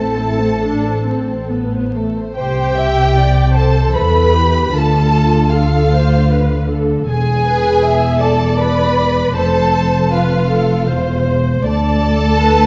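Classical slow romantic movement for string orchestra, yearning and melancholic, at 78 BPM in 3/4 with uneven, rubato beats, where lush, expressive violin sections carry the melody and a second line over a rich, smooth viola accompaniment, a dark, woody cello bass and an up-front double bass section, all bowed with vibrato through 12.7 seconds in a scoring-stage reverb with a dark production and vinyl crackle, moving from Am through C, Dm, E7 and Fmaj7 to D5 in this excerpt cut from a longer piece.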